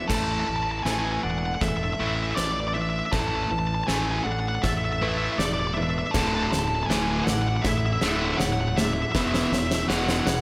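A steady, straight 4/4 pulse at 80 BPM drives this cinematic, soaring post-rock excerpt, an oversized low-tuned kit with a fat snare, boomy kick and crash cymbal building through a drum fill under a growly fuzz bass and a cranked, bright stack guitar riff, while a nasal, dark lead guitar with a parked wah carries the melody up front. A bright, twangy, very quiet twelve-string electric guitar and a felt-muted upright piano, mellow with audible action noise and set in the background, spin arpeggios as the chords move from Asus4 to Dsus2 at 6.2 seconds and E at 9.2 seconds. A second, very quiet distorted guitar riff joins at 6.1 seconds, and a lush hall reverb gives the whole a big arena sound.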